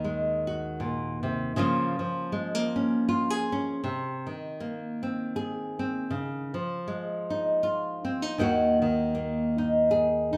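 In a lilting 3/4 at 79 BPM, with a gentle swing on the eighth notes, this short folk passage moves with an unhurried, rocking gait. A lone nylon-string guitar carries the whole piece, fingerpicked in a classical manner and sitting up front, spanning Eb2 to Ab4. Its tone is warm and intimate, and finger squeak along the strings adds a close, human texture. The harmony drifts from Ebm through Db6, Abadd9/C and Dbadd9 before settling back on Ebm near 8.4 seconds, giving the music a wistful, haunting cast. A moderate, large studio reverb surrounds the guitar with an airy sense of space, as if it were played live in one room, and the brief passage, tuned to A4 = 441 Hz, is cut from a longer piece.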